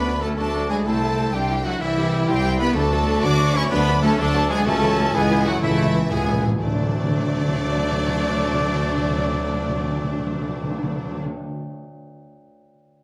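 Heroic adventure film score in 12/8 at 125 BPM, heroic and triumphant, with a lush violin section carrying the melody from D5 to D6 while flute, clarinet, cor anglais and a second, softer violin line weave supporting parts, the clarinet dropping out at 6.3 seconds. Mellow French horns sustain chords, violas fill in with intense vibrato, a ringing fingerpicked harp arpeggiates, and dark, distant trumpet stabs punctuate over a bass of rich cellos, a roomy tuba and double basses. Round, up-front timpani enter at 4.7 seconds with a fill leading into the D chord at 6.6 seconds, all bathed in a wet recital-hall reverb.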